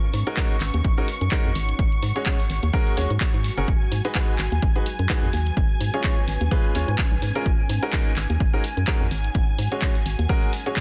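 This soulful, energetic piano house cut opens on shimmering, bright string-machine chords with ensemble chorus, a hollow, percussive, organ-like FM bass up front, and a deep, moody pad in the background with its own chorus and built-in reverb, all three pumping with sidechain. A tape-warm, layered house kit of handclaps and hi-hat with a swung 16th feel enters at 0.1 s, a clear, woody upright piano riff with tape echo and sidechain pumping joins at 0.3 s, and a punchy analog kick lands up front at 0.4 s. The harmony cycles through minor-seventh, add-nine and dominant-seventh chords over a G# foundation, in a dense, heavily limited mix with little reverb on the room.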